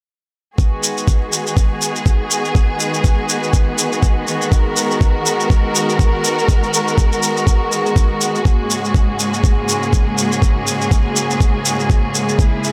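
At 0.6 seconds, a knocking electronic kick, a layered shaker and a lush bowed string section all arrive together, setting a hypnotic, earthy afro house groove at 122 BPM in 4/4 with a 58% swing on the 16ths. The kick sits up front and produced, while the shaker, re-recorded in a small room, adds a textured electronic pulse beneath it. The strings hold sustained chords with a rich vibrato that feels focused yet distant, and sidechain pumping makes them breathe rhythmically. The harmony rests on G#m7 before shifting at 8.5 seconds to F#add9/G#, staying anchored in G# minor with tuning set to A4 = 441 Hz. Light reverb and digital ambience lend the mix a polished studio sheen, and the passage is cut from a longer piece, ending at 12.7 seconds.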